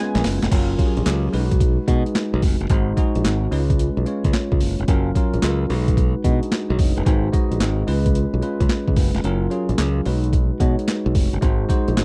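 A short drum fill and a bell-like, clean electric piano open this bouncy, upbeat new jack swing excerpt at 110 BPM in F# major, where gritty, overdriven sampler-style boom bap drums with a thumpy kick, high-tuned snare, handclaps, hi-hat and crash ride a swung 16th-note feel up front beside a growly, punchy fingered bass, all cycling through F#maj7, B6, G#7 and C#7 in a dry, close 1970s-style sound, with the kick dropping out briefly from 9.2 to 10.3 seconds.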